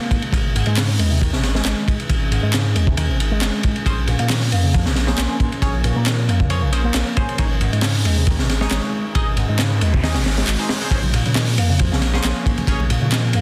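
A dense, heavily limited mix with small-room ambience carries this gritty, funky breakbeat excerpt, where a crunchy, up-front drum kit with a punchy kick and high-tuned snare drives over a deep, saturated sub bass and a bright picked electric bass run through an envelope filter and tape echo, while a warbling, nostalgic pad sustains chords with chorus and sidechain pumping, overdriven electronic handclaps sit in the background, a nasal band-passed chord stab with phaser enters at 3.9 s, a faint noise sweep passes at 9.6 s, and very quiet live-room congas appear at 11.0 s.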